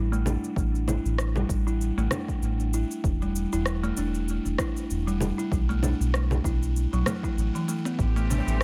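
A buzzing, woody kalimba plays filtered, delayed arpeggios up front over a round, deep analog bass, layered electronic kick, and an electronic shaker, congas and rim click in this meditative organic downtempo excerpt in A minor at 97 BPM with a swung 16th feel, where a rich, distant symphonic string section with sidechain pumping arrives at 8.0 seconds and a crisp, distant darbuka enters in the background at 8.3 seconds.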